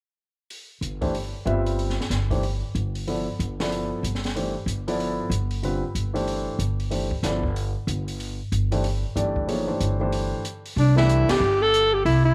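Set in a small room with light reverb, this hypnotic, open modal jazz fragment swings on a single Cmaj9 chord, as an acoustic drum kit with dark cymbals, a high-tuned snare and a boomy kick is joined by woody, thumpy pizzicato upright bass on gut strings and an intimate grand piano whose action noise can be heard. After a break, a breathy alto saxophone enters at 10.8 seconds, mellow and whispered, with subtone, light vibrato and scooped notes. A band accent lands at 11.3 seconds before the fragment is cut off.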